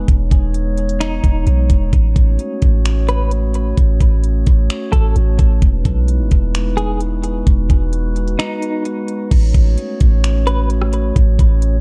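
A half-time trap beat at 130 BPM, with a knocking kick, crisp hi-hats, finger snaps, rim clicks and crash cymbal carrying a gritty vintage 12-bit sampler edge, drives this floating, blissful cloud-rap excerpt, where a deep, boomy 808-style bass sits up front beneath ethereal glass harmonica chords pumping with sidechain over Emaj7 and A6, a clean, compressed electric guitar melody with tremolo and delay drifts in from 1.0 s to 10.7 s, and a brief break at 8.4 s leads into a closing section in a dark, warm digital ambience.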